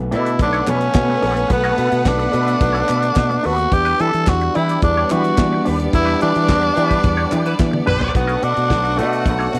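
A dark French horn section holds sustained chords in the background as a growly, punchy fingered electric bass starts up front, opening this glamorous, danceable disco excerpt in B minor at 108 BPM in a straight 4/4. A raspy tenor saxophone with a smooth top carries the melody almost at once, over a dry 70s drum kit with a fat snare and tight kick, while a bright, clean semi-hollow electric guitar with wah plays accompaniment in the background. A lush, bowed studio string section with intense vibrato adds a second line, and very quiet, high-tuned vintage congas and a crisp group handclap fill out the percussion. The harmony moves from Bm7 to Em7. A band accent runs from 5.9 seconds into a drum fill, where a distant, roomy horn section punches short stabs with slapback echo at 7.5 seconds. At 8.1 seconds the chords return to Bm7 and the gritty, growling saxophone breaks into a solo, all in a light studio reverb.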